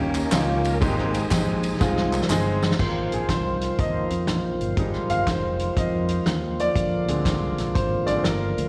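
Uptempo gospel at 121 BPM in Ab major with a swung 4/4 feel, this short uplifting, soulful cut places a clear, intimate baby grand piano with audible action noise and slapback echo up front, beside a thick, lightly overdriven tonewheel organ whose fast rotary speaker and key click colour its sustained chords. A round, punchy fingered electric bass and a dry soul drum kit with a fat snare, tight kick and slapback echo drive the groove, while handclaps and tambourine add close percussion until 2.7 seconds. After a drum fill from 1.8 seconds, the piano takes a solo from 2.8 seconds over Abmaj7, Fm7 and Bb7 changes, all heard as a live gig through the venue's PA with recital hall reverb.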